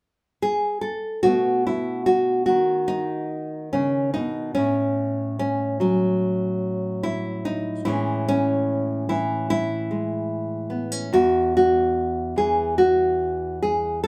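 A straight 4/4 pulse at 73 BPM sets an unhurried pace for this pastoral, peaceful folk piece, cut from a longer work. A solo nylon-string guitar carries everything, entering at 0.4 seconds and playing until 14.1 seconds, fingerpicked across a range from E2 to A4 with a warm, classical tone placed up front. After a brief unharmonised opening, the harmony moves through B7, F#m/A and Amaj7 before settling back into an open, chordless passage at 11.1 seconds. A wet small-room reverb gives the guitar a close, intimate ambience, as if played live in one room. The instrument is tuned to A4 = 441 Hz.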